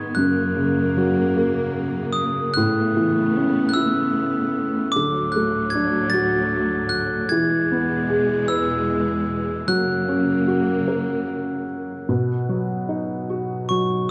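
A gentle, innocent children's lullaby in a slow 6/8 at 50 BPM, its chords moving from F# through Aadd9, D and E before settling on B at 12.1 seconds in this fragment of a longer piece. A bell-like glockenspiel struck with brass mallets carries the high, ringing melody over a soft, intimate felt-muted upright piano accompaniment, while a clear, focused string section holds bowed chords with vibrato until 12.1 seconds. The dark, warm production sits in a moderate recital-hall reverb, lending the vintage-toned glockenspiel and mellow piano a hushed glow.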